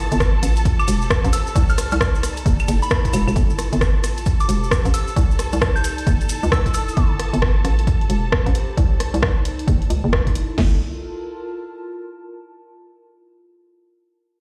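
Skippy and soulful, this UK garage excerpt rides a swung two-step groove, cut from a longer piece. Up front, a punchy, overdriven analog drum machine drives the kick, snare, toms and crash, while a second overdriven drum machine layer adds claves, hi-hat and rim click, and grainy, mellow maracas shuffle along until 7.0 seconds. A hollow, bouncy FM bass knocks out the low end with fast, decaying notes, and a filter sweep runs over it from 3.4 to 10.6 seconds after an opening drop and a band accent at 2.9 seconds. Above, a distant studio violin section holds lush, expressive bowed chords with vibrato and portamento, pumping against the beat through the progression of Am9, Cmadd9, F#m7 and Gm9. A soft, pure synth bell with chorus and digital delay traces a gentle, vintage melody from 0.8 seconds, and a nostalgic, detuned lo-fi pad with chorus, phaser and its own reverb breathes underneath, lingering alone to 12.3 seconds. 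The whole mix sounds as if played on a big sound system in a bare stone room.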